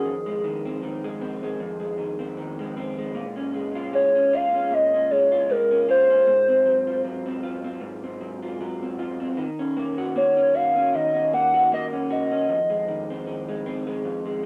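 A warbling, wave-folded lead carries the melody up front, its nostalgic buzz thickened by lush chorus and cassette tape, before dropping out at 13.2 seconds. Beneath it, a dark, slightly broken-up electric guitar through a small old amp plays a compressed, lo-fi accompaniment with chorus and vibrato, continuing to 14.5 seconds over a progression of Fm7, Bbm7, Ab6 and Ebm7 that returns to Fm7. This short cut from a longer indie pop piece moves at an unhurried 77 BPM with a gentle swing in Eb dorian, and its home-cassette recording and moderate reverb give it a mellow, hazy feel.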